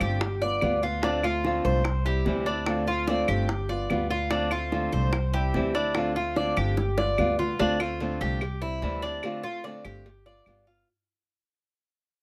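A straight 4/4 pulse at 146 BPM carries this relaxed Cuban son and guajira, with round, low-tuned bongos and cowbell and close, dry claves sitting in the background. Up front, the metallic, double-strung Cuban tres picks arpeggios over a dark, fingerpicked nylon-string guitar and a thumpy, woody pizzicato upright bass, cycling through G7, Dm7 and C in light reverb. A drum fill arrives at 6.8 seconds before the recording begins fading out at 7.6 seconds.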